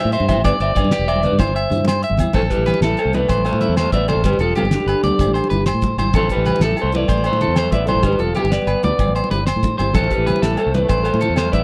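A dry, close 1970s-style studio recording with light reverb frames this danceable, bittersweet highlife guitar band passage in A minor at 126 BPM in 12/8, where an up-front, slightly broken-up electric guitar with slapback echo carries the melody over a second picked guitar's echoing arpeggios, a round, foam-muted fingered bass, a damped 70s drum kit with a fat snare and dark cymbals, soft-handed congas, ringing agogo bells and a clean, chorused electric guitar in the background, while a very quiet, clear trombone adds a second line from 2.4 s.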